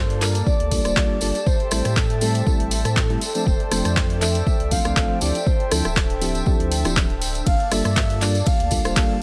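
This deep house excerpt opens with a breathy, flute-like synth lead carrying the melody over a hollow pad, mellow FM electric piano stabs and a warm sub bass, setting a late-night mood. The lead has a vintage, warbling quality with vibrato, lush chorus and tape echo. The pad, piano and bass pump against the sidechain, and the bass is thickened by tube saturation. A punchy analog drum machine, with dry, overdriven handclaps, hi-hat, ride cymbal and rim click, comes in almost at once alongside a jingly tambourine set distant in a large room, and an up-front electronic kick enters at 0.5 seconds. Beneath them, a silky string machine and an ethereal, airy pad with slow attacks add very quiet texture. The lightly swung groove sits on chords moving from Gm9 through Am7, F6 and Dm11 before returning to Gm9 at 7.5 seconds, all in a close, intimate sound.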